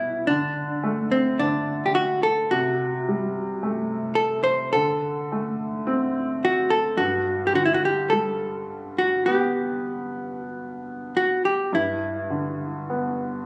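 Tender and wistful, this Celtic slow air in G major moves in free rubato at around 47-55 BPM in 4/4, and is cut from a longer piece. A dark, clean hollow-body electric jazz guitar sits up front with the picked melody, while a woody, slightly detuned upright piano with a worn character plays the accompaniment in a lower register; both play throughout over the chords D5, C5, D5 and G. It was captured on a phone in the room, with light club reverb and compression.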